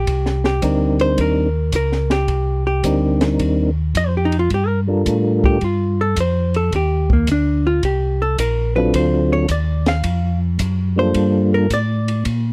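Soul jazz organ trio in G minor at 108 BPM, a soulful, bluesy swung excerpt cut from a longer piece that moves through Cm7, Gm7, Eb5 and D7#9 before returning to Gm7. A mellow, round tonewheel organ carries the bass with key click, chorus vibrato and a stopped rotary speaker. A second, percussive organ with a soft, flute-like tone, second harmonic percussion and a slow rotary speaker plays the melody from 0.6 seconds, while a picked, compressed hollow-body electric guitar solos up front throughout, and a compact cocktail kit with dark cymbals, a high-tuned snare and a punchy kick plays hi-hat, ride, snare and kick in a close, dry 1970s-style studio sound.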